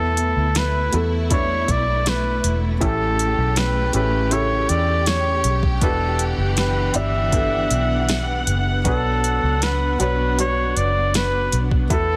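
An up-front flugelhorn carries the melody with vibrato and scooped, jazz-style notes in this melancholic, longing pop ballad, cut from a longer piece. Beneath it, a mellow, intimate felt-muted upright piano with audible action noise sits alongside a lush, woody string section holding bowed chords, over a dark, round, foam-muted electric bass and a tape-warm, smooth R&B drum kit with a soft kick, fat snare and smooth hi-hats. Light reverb and studio ambience surround a dense, heavily limited modern master as the chords move from Esus4 through A7 and Em7 to Bm.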